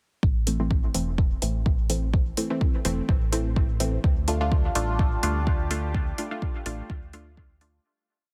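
A round, deep analog bass and an up-front electronic kick open this short dub techno piece at 0.2 seconds, the kick laying down a four-on-the-floor pulse at 126 BPM in A minor while the bass carries a dark, sustained dub-style line that pumps against the kick. Moments later metallic, tape-tinged hi-hats arrive with a programmed backbeat, and a muted, mellow chord stab sits forward in the mix on the off-beats, one shape moved in parallel, colored with chorus, phaser and a dub echo that gives the groove its cavernous, hypnotic depth. The 16th notes carry a light swing, and the harmony rests on A minor before shifting to D minor at 4.0 seconds. At that point a moody, nasal analog pad slides in far behind the beat with a slow attack and lush chorus, joined by a bright, bubbling texture whose resonant filter steps at random around a held high note, bathed in its own reverb. From 5.3 seconds the whole piece fades out, with the dense, heavily limited master keeping the sound thick to the close.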